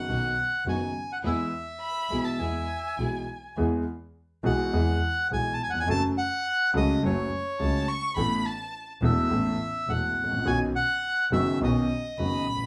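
Tango at 104 BPM in E major, played with a rubato feel, this elegant and passionate passage is cut from a longer piece, with the band performing live together in one room under a wet studio reverb. Up front, a reedy, dark bandoneon carries the melody, while a concert grand piano supplies accompaniment with deep bass, audible action noise and an intimate, natural character. A single bowed double bass holds the low end, played sul tasto with light vibrato, a soft attack and an airy bow that sounds close and warm. A clear symphonic string section adds biting, focused, lush stabs in the background only until 3.2 seconds, and a solo violin, expressive with vibrato and portamento, enters up front as a second line at 1.8 seconds, drops out, then returns from 7.6 seconds to the end. The harmony moves from B to E, then through F#m, Asus2 and Badd9.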